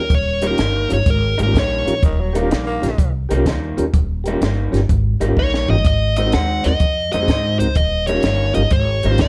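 Lightly reverberant and cut from a longer piece, this soulful, laid-back electric blues shuffle in Eb mixolydian swings at 125 BPM over Eb7 and Ab7, with a woody pizzicato upright bass up front, a compact cocktail kit with a high-tuned snare and punchy kick, a mellow, flute-like tonewheel organ through a slow rotary speaker, a slightly broken-up, lo-fi guitar riff from a small old amp, a breathy, raspy tenor saxophone growling briefly at 2.0 seconds, and a dark, overdriven lead guitar with plate reverb that opens the melody and returns at 5.4 seconds alongside a drum fill.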